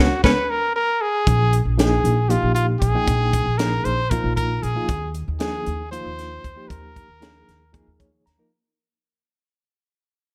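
A funky, slick stretch of electric jazz fusion opens with a band accent in which a clear trumpet, a reed electric piano and an upright bass hit together, with the drum kit coming in at 0.2 seconds and a drum fill carrying the group into the next section at 1.3 seconds. The groove runs at 232 BPM counted in eighths, in a straight 7/8 over chords moving from Db7(no3) to Bb7sus4 and then Ebsus24. The trumpet leads with a forceful, punchy jazz solo tone and light vibrato, sitting up front in a middle register. Beneath it, the electric piano sounds reedy and barky, lightly overdriven with a fast tremolo through its built-in speakers, while the pizzicato upright bass is woody and growly with steel strings, placed close to the listener. The crisp fusion drum kit, with its high-tuned snare, punchy kick and hi-hat, sounds distant and roomy, all under light reverb. The music fades out from 1.3 seconds onward, and the electric piano adds a closing fill at 7.7 seconds as this cut from a longer piece ends.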